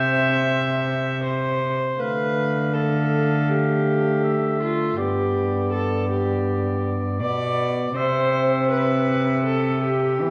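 A solo oboe, a gut-strung viola, a solo trombone and a bowed cello begin together in this courtly, rustic Renaissance-style consort dance in D dorian, moving at a straight, unhurried 80 BPM in 4/4. The soft-attacked oboe carries the melody from a distance, the viola's second line has a reedy, lightly vibrato period tone, the trombone gives a warm, lightly vibrato accompaniment, and the nasal cello anchors the bass. A new section begins at 2.0 s as the harmony moves from C through Dm and G back to C, all set in a dark, reverberant recital hall in this short cut from a longer piece.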